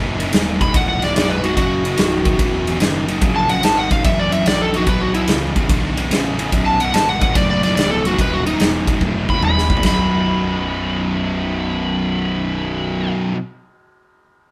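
Recorded with a band playing live in one room under light reverb, this raunchy, driving slice of blues rock and southern rock swings at 145 BPM in B mixolydian, moving through B, F#, E5 and back to B. A bright, double-tracked fuzz guitar riff sits up front over a growly, overdriven fuzz bass and an acoustic kit with a medium-tuned snare, punchy kick, ride and toms, while an overdriven slide guitar played with fingerpicks carries the melody from 0.6 seconds in. The drums cap the passage with a fill at 9.0 seconds and drop out at 10.0, leaving the guitars and bass to push into a new section before the cut.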